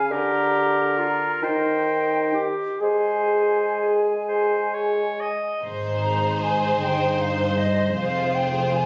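A slow, melancholic and yearning romantic orchestral movement in 6/8 and Ab major, taken from a longer piece, drifts with rubato at around 41-53 BPM in dotted quarters. It opens with woodwinds alone: an up-front, mellow bassoon carries the low accompaniment beneath a punchy oboe, a soft-attack clarinet and an airy, bright silver flute, whose expressive line continues after the others stop. At 5.6 seconds the strings take over, with a focused violin section singing the melody over lush violas, a background violin line, cellos and rich double basses, all heard through a reverberant hall as if captured on a phone in the room, with compression and dulled highs.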